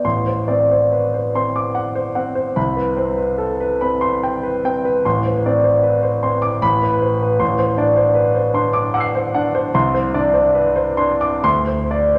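A smooth, vintage-toned concert grand piano opens this mysterious, nocturnal fragment of impressionist solo piano, playing in a three-beat metre with a freely breathing rubato. Sitting up front with a deep bass and a range stretching from A1 to C7, the piano drifts through colourful harmonies, from Am6 through Amadd9 and D13/A to a closing Csus2/D at 11.4 seconds. A wet concert hall reverb gives this 12.2-second passage, cut from a longer piece, a spacious glow.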